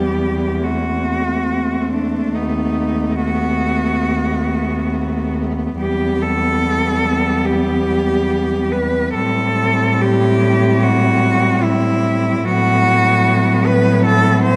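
Classical writing for a cello ensemble, this lyrical, elegiac passage moves with an uneven, rubato pulse in 4/4 and carries a yearning quality throughout its 14.6 seconds, cut from a longer piece. A clear, up-front cello sings the melody in its upper register, bowed smoothly and evenly with vibrato. Beneath it, two rich cellos fill the middle: one plays a distant second line, the other a close accompaniment, both smooth and even with vibrato. The bass cello, also up front yet set at a distance, brings expressive playing with vibrato and portamento in its low register. The harmony moves from Em through F#m7b5/E, B7/D#, back to Em, then to Am7 and B5/A, all heard within a light reverb.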